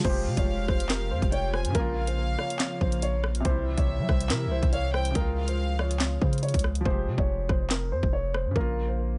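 Tense and ominous, this short cut from a longer drill track moves with a heavy half-time feel. A dark, boxy concert grand carries the melody in a narrow upper range, its tone filtered and trailed by digital delay, while a felt-muted upright piano adds soft, intimate accompaniment with audible action noise and short sustain. A breathy, chorused pad hangs in the background with slow-blooming chords until about 6.8 seconds, and a reedy violin section with light vibrato and a gut-string tone plays a second line high above from 0.3 to 6.0 seconds, echoed by delay. Underneath, a long sine-like 808 bass sits up front with a fast attack and a deep, decaying tone, joined by an electronic drum kit with a hard-clipped kick, sharp snare, bright hi-hats, handclaps, rim clicks and crash cymbal. At 6.9 seconds the hi-hats drop out as the harmony returns to its opening chord, giving the final bars a starker feel within the small, dim-sounding room.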